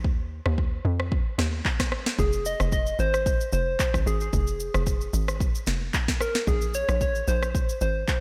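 Deep and soulful, this amapiano excerpt opens with a short break of tight, punchy log drum bass and an electronic afro-pop kit of deep kick, sharp snare, handclaps, rim click and shaker, before a round, warbling FM synth lead with chorus and tape echo enters at 2.2 seconds over a light digital reverb, moving from Ebsus2 through Fm to a rootless Abadd9.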